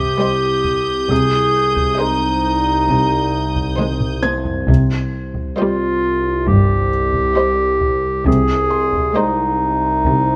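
A straight 4/4 pulse at 67 BPM carries this mysterious, ominous cinematic suspense cue over C minor and Ab/C, where a mellow, roomy classical clarinet sits up front above bowed sul tasto strings (floating violas, pure cellos, and intimate double basses in the background), a dark violin melody and a warm violin second line, a high violin texture that stops at 4.2 seconds, a felt-muted upright piano with audible action noise, and an evolving, warbling analog sawtooth drone with chorus, while a close, hard-stick taiko ensemble enters at 0.6 seconds and plays a fill at 3.8 seconds.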